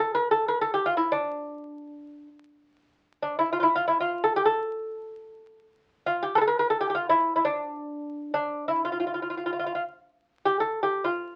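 Unfolding in free time, this short fragment of Persian modal music moves with a longing, hypnotic pull in avaz esfahan on D. A solo lute carries everything, fingerpicked and delicate, its gut strings sounding in double courses, some doubled at the octave, and it sits up front in the mix. The melody stays within a narrow span from D4 to Bb4+50c, and its quarter-tone inflection gives the line its plaintive color. After an opening phrase, the same material returns at 3.0 seconds and carries through to the cut at 11.4 seconds. A moderate club reverb lends a modest sense of room, while the sound of a very old 78 rpm record, complete with vinyl crackle, wraps the warm, intimate playing in a dusty, aged patina.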